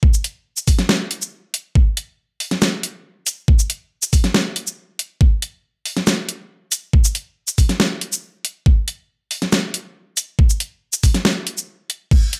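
A half-time 4/4 groove at 139 BPM drives this menacing, chaotic dubstep excerpt, where an up-front, knocking electronic kick drum runs from 0.0 to 12.2 seconds alongside a layered, tape-warm dubstep kit of huge snare, bright hi-hats, shaker and crash cymbal, both parts carrying a small room ambience in an otherwise dry mix.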